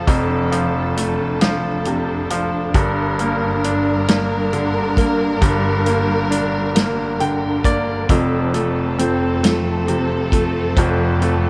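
A bright, brilliant concert grand piano accompanies this tender, swaying six-eight pop ballad in F major at 45 BPM, its deep bass and short sustain sitting up front and breaking into a fill from 6.8 to 8.1 seconds as the chords move from F to Gm and back to F. Alongside it, a warm studio string section holds expressive bowed chords with vibrato, portamento and a smooth top, while a natural country drum kit with a punchy kick and medium-tuned snare plays hi-hat, kick and snare. At 8.1 seconds a full-bodied, fingerpicked jumbo steel-string acoustic guitar joins with arpeggios carrying a slapback echo, all within a moderate echo chamber reverb and a faint mains hum in this short excerpt.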